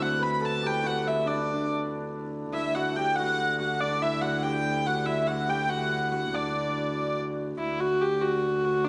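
A clear, nasal hurdy-gurdy carries the melody up front from the opening of this festive, ancient-sounding medieval dance in 6/8, alongside a shimmering hammered dulcimer on a second line and a rich, floating viola da gamba holding a low drone on D2, all heard in a reverberant recital hall across this 8.9-second excerpt.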